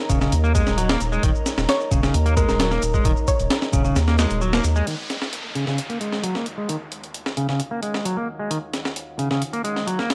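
A bright, clean, picked electric guitar sits up front with a tube-saturated, low-pass filtered riff that runs through the whole cut, and from 4.9 seconds a filter sweep moves across it. Beneath it, a compressed, sampler-style breakbeat kit drives this gritty, energetic breaks excerpt with a thumpy kick and a high-tuned snare, all in a small room. A deep, thick saturated sub bass with a fast attack sits up front alongside the drums, while an overdriven, layered shaker adds texture in the background, both stopping at 4.8 seconds. A moody, detuned, wave-folded analog pad holds dark sustained chords with chorus and sidechain pumping underneath, shifting from Eb7(no3) to Ebm7 as the second section begins. Between 1.7 and 3.6 seconds a round, tine-like FM pluck with a thumb-piano character adds a short melody through chorus, telephone-style filtering and analog delay. An electronic downlifter then falls through much of the second section, and the dry, lightly reverberant hardware recording gives the whole a raw, gritty edge.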